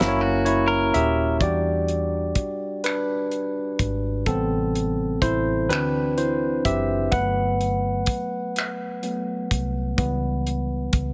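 A slow six-eight R&B groove at 42 BPM opens on a brief break, with a clean, twangy picked electric guitar adding a compressed second line over the first 1.4 seconds before it stops. From 1.4 seconds, the barky tine electric piano, bright and up front through a combo amp, takes a solo over chords moving from Em7 through Am7, D7 and Gmaj7 to C#m7b5. A dark, foam-muted fingered bass with a round, punchy tone and a dry, damped 70s kit with a fat snare, tight kick, hi-hat and finger snaps carry this late-night, yearning fragment in a small room with light reverb.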